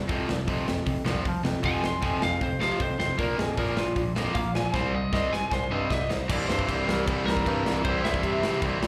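Punk rock with an energetic, upbeat drive, this excerpt from a live club gig sets a crunchy overdriven guitar in the background against a tight, bright distorted guitar with slapback echo, while a clear bass clarinet carries the low line. A big rock drum kit with a punchy kick and bright cymbals sits up front and plays a fill from 4.7 seconds, and a dark, slightly broken-up lead guitar enters at 1.7 seconds to solo over power chords before a new section arrives at 6.3 seconds.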